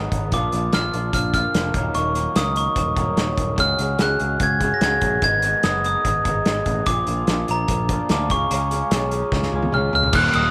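A straight 4/4 pulse at 147 BPM drives this moody, restless indie rock excerpt, cut from a longer piece, with a loose drum kit sitting up front in a small, pumping room, its tight kick, medium-tuned snare, hi-hat, ride, crash and toms carrying the groove before a drum fill from 9.3 to 10.1 seconds. Underneath, a picked electric bass plays a round, direct low line, while an electric guitar through a small old amp plays a twangy, slightly broken-up riff coated in lush chorus. The glockenspiel, struck with soft plastic mallets, leads the melody from 0.3 seconds, bell-like and ringing, with slapback echo and sitting prominently over the band. The chords move through Bb, Ebm7, Dbsus4, Abm, Bb and Db7, and at 10.1 seconds an overdriven electric guitar riff with analog chorus and slapback echo arrives alongside a very quiet, mellow string-machine cello pad with a slow attack and vintage sawtooth character. 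A moderate spring reverb gives the whole mix a roomy sheen.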